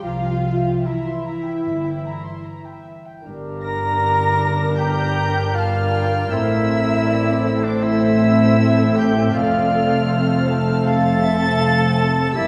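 Moving freely in a rubato 4/4 around 79 BPM, this tender, emotional film-score excerpt in F major unfolds over chords of C7, Gm, Am and F. A dark, intimate chamber violin section carries the melody high above the staff, bowed sul tasto with soft attacks and light vibrato, while a second violin section floats a pure, background line beneath it. Violas fill in the accompaniment, and cellos and double basses anchor the low end with their own gentle, close-miked sul tasto tone. At 3.3 seconds, as the music moves into its second section, a warm French horn section with a vintage, classical character enters in the background with sustained chords. Moments later, at 3.6 seconds, a clear oboe with a smooth top and an airy, distant concert flute join with expressive secondary lines. The whole orchestra sits in a wet concert-hall reverb that lends the moving passage a spacious, glowing sense of depth.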